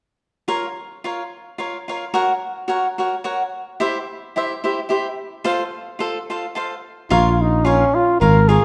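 Dramatic and passionate, this short cut from a longer mariachi-flavoured Mexican folk piece moves in a straight 3/4 at 109 BPM in B-flat minor. A crisp, picked acoustic cavaquinho opens alone at 0.5 s, carrying the accompaniment up front through a Bbm, Gb, C and F progression. At 7.1 s, as the harmony returns to Bbm, a dark trumpet enters in a classical style as the solo voice, its smooth top and light vibrato placed up front. Alongside it comes a sustaining fretless electric bass, bright and growly with a direct, amped sound, holding the low register. A moderate scoring-stage reverb gives the ensemble a sense of space before the passage ends at 8.6 s.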